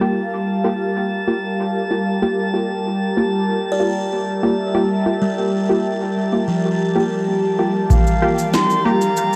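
Over a breathy, detuned pad with chorus and phaser, a filter sweep moves through the opening 7.9 seconds of this meditative, deep ambient dub excerpt at 95 BPM in G dorian on a Gm7 chord, accompanied by muted sawtooth chord stabs trailing dub echo and a faint glassy texture of drifting overtones. At 3.7 seconds a buzzing, woody kalimba enters with close-miked arpeggios echoing into the distance, and at 7.9 seconds a pure wooden flute melody with vibrato arrives alongside a single deep, tape-warm kick and an echoing shaker and woody snare. A huge ambient reverb with a 7.2-second tail surrounds the parts.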